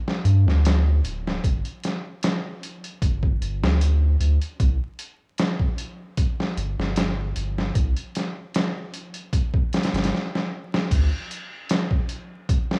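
A sampler-style trip hop drum kit opens the recording, its thumpy kick, medium-tuned snare, hi-hat and crash sounding compressed, pitched down and gritty, with a tape-warm, small-room character up front. A round analog bass joins almost at once, deep and dark with a fast attack and sustained notes, its sine-like tone thickened by tube saturation. The mood is brooding and smoky in a straight 4/4, wrapped in light reverb and a bed of vinyl crackle. At 10.1 seconds the groove stops for a drum fill, and the bass drops out at 11.1 seconds as the drums carry a brief closing section alone. The passage is cut from a longer piece.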